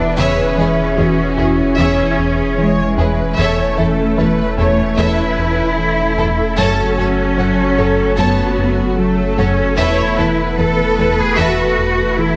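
Tense and vast, this cinematic hybrid orchestral and electronic film-score excerpt in F# minor moves at 75 BPM over C#m/E, A/E, F#m and Esus4, with a lush, up-front cello section and a round, nasal analog bass riff joined by a punchy sub bass and bowed double bass section, while a focused viola section accompanies and a shimmering chorused pulse-width pad, a dark, distant French horn section and a tight trombone section hold sustained chords beneath a soft-attack violin melody and second violin line, as a very quiet, squelchy ring-modulated blip pluck adds phaser-tinged arpeggios, all set in a scoring-stage reverb.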